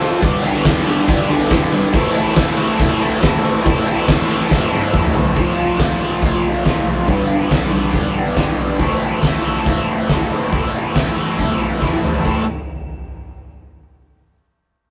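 Raw and swaggering, this garage rock excerpt in A minor moves at 140 BPM in straight 4/4. A crunchy, double-tracked overdriven electric guitar riff runs through a phaser over chords moving from G to Am and then F, G and Am. An oversized, low-tuned acoustic drum kit with a fat snare, punchy kick and dark cymbals sits in a bright stone room and adds fills at 4.5 and 11.8 seconds. Both parts stay up front until 12.4 seconds in a rough rehearsal-room recording.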